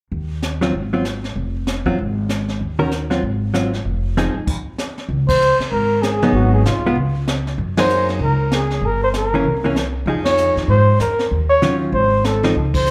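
A vibrato-rich flugelhorn with a soft attack and scooped notes takes the solo melody at 5.3 s, sitting up front in plate reverb and slapback echo, in this playful, warm excerpt of small-group swing and bop at 193 BPM in Db major. Underneath, a woody, thumpy pizzicato upright bass on gut strings, a dark, clean, compressed hollow-body guitar picking the chords, and a brush kit with dark cymbals, a high-tuned snare and a punchy kick drive the swing. The band halts for a stop at 4.5 s and later hits accents together, captured live through the venue's PA with moderate club reverb.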